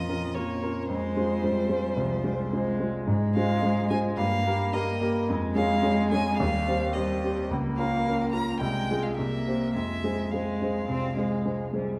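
Stormy and restless, this quick classical-period movement for piano trio in F minor moves at 108 BPM in a straight 4/4, a short portion cut from a longer piece. A single bowed violin carries the melody with vibrato, a soft attack and expressive portamento until 11.7 seconds, while a rich, smooth cello plays an even second line from a more distant place, and an up-front grand piano with a vintage tone supplies the accompaniment across a broad register. The harmony moves from Bb minor through a string of chords before settling from C7 onto F minor at 9.7 seconds, all within a dark, warm production bathed in the wet reverb of a recital hall.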